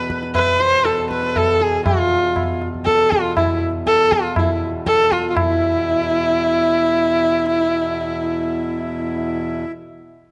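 A nasal, bowed sarangi with light vibrato and gliding portamento carries the melody up front from the start, joined by a smooth, dark hand-pumped harmonium on a second line and a breathing, boxy harmonium drone in the background, while high-tuned, dry tabla plays the 7/4 cycle at 120 BPM until 5.5 s in this radiant, meditative Hindustani classical excerpt, captured with close, detailed microphones and a touch of reverb.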